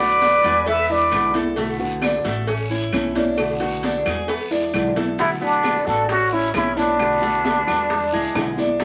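Sunny and warm, this Cuban son and guajira piece at 133 BPM features a breathy, plunger-muted trumpet with wah-wah and scooped notes up front, shadowed in the background by a clear, punchy second trumpet; the pair plays briefly at the start and returns at 5.2 seconds over a thumb-plucked nylon-string guitar, a metallic, double-strung Cuban tres picking arpeggios, and a woody, thumpy pizzicato upright bass, with a raspy guiro and a background bed of bright high-tuned congas, tight saturated cowbell and bongos, grainy maracas and vintage, band-limited claves, the mix wrapped in studio reverb and vinyl crackle.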